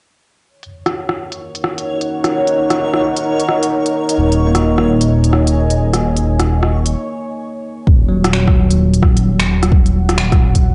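A swung 130 BPM future garage groove in Eb minor opens at 0.6 s on an organic electronic kit of finger snaps, crisp filtered hi-hats and rim clicks, while a reversed, dreamy triangle texture swells and a deep, moody detuned-saw pad with chorus and a sub octave pumps around a sustained Ebm7 for a nocturnal, wistful feel. A rumbling, beating saw bass arrives up front at 4.2 s, soon joined by a bell-like, clean tine electric piano with analog delay. After a short break, a deep electronic kick lands at 7.9 s, everything bar the bass carrying a tape-softened, lo-fi cassette sheen in a moderate room in this fragment of a longer piece.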